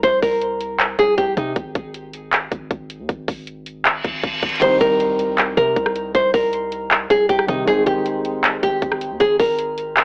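This trap-flavoured hip hop excerpt in C minor has a brooding, eerie mood, moving at 157 BPM with a half-time feel. A woody, fingerpicked nylon-string guitar with old strings carries the melody up front, sounding small and warm. Beneath it, a long, sine-like 808-style bass with a fast attack and decaying tail gives a deep, mellow low end, while an electronic trap kit sits forward with a hard-clipped kick, metallic hi-hats, handclaps, rim clicks and crash cymbal. After a break from 1.6 seconds, a reverse cymbal rises into an electronic impact at 4.6 seconds, where the guitar returns and a dark, vintage-toned grand piano with short sustain adds smooth accompaniment. The whole recording is dry and gritty, with a lo-fi AM radio character.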